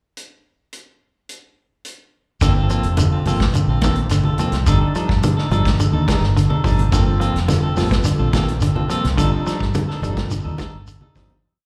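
Afrobeat at 106 BPM in G minor, funky and hypnotic, heard as a live gig through a club PA with light reverb and small-room ambience. A saturated, gritty vintage drum kit opens alone with a pickup bar, its tight kick, medium-tuned snare and hi-hat carrying an afro kit groove with a rolled-off top. At 2.4 seconds the groove arrives: a dark, round, foam-muted fingered bass plays a syncopated riff, a bright picked guitar runs a background arpeggio ostinato, and a second clean guitar strums upper chord shapes, both guitars wet with spring reverb and slapback echo, while a grainy, close shekere shakes alongside. Low-tuned congas with a thick skin sit in the background from 3.0 seconds, touched by slapback echo. The chords alternate between Gm11 and F13/G, and at 6.9 seconds a reedy, worn, slightly out-of-tune electric piano slips in behind with lightly overdriven, fast-tremolo quartal stabs. 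The piece fades out from 9.2 seconds and closes on a short drum fill.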